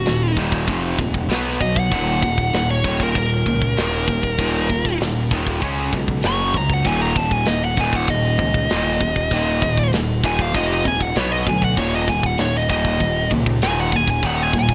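Heavy, dark heavy metal in Eb minor at 97 BPM, where a dark, high-gain lead guitar solo with distortion and digital delay soars over a sludgy, double-tracked rhythm guitar riff, a growly fuzz-overdriven picked bass, and a tight, up-front drum kit with bright cymbals that enters at 0.1 seconds, all cut from a longer piece and set in studio reverb.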